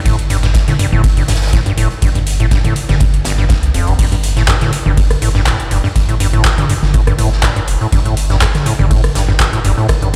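Driving and trippy, this acid house excerpt at 122 BPM with a light swing rides a squelchy, resonant square-wave acid bass riff under overdrive and a filter sweep, a round sine sub bass pumping against the sidechain, a deep electronic kick, a booming analog drum machine with metallic hats, handclaps, rim clicks, toms and crash, and a gritty, saturated garage kit of high-passed hi-hat and snare in a bright stone room, all bathed in large studio reverb like a big sound system in a bare room.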